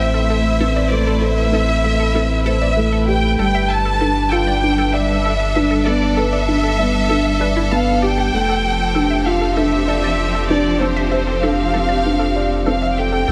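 Cinematic and melancholic, this piano and strings electronica excerpt sets a soft, felt-muted upright piano riff with digital delay against a lush violin section melody full of expressive portamento, sustained chords from a clear, focused string section, bright detuned analog pluck arpeggios with chorus and delay sitting in the background, and a round sine sub bass, all bathed in a moderate recital hall reverb as the harmony moves from Am to G7 at 3.4 seconds and F6 at 8.3 seconds.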